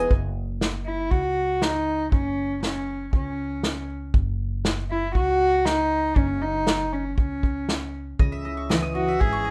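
A rough home-demo mix with light reverb frames this nostalgic, uplifting indie folk excerpt, where a roomy unplugged drum kit with a tight kick and bundle sticks and a dark, growly pizzicato upright bass carry a soft, floating bowed cello melody touched with slapback echo from 0.9 seconds, before a full-bodied fingerpicked jumbo acoustic guitar joins at 8.2 seconds and a bright, double-strung mandolin, heard only briefly at the very start, returns with echoed arpeggios.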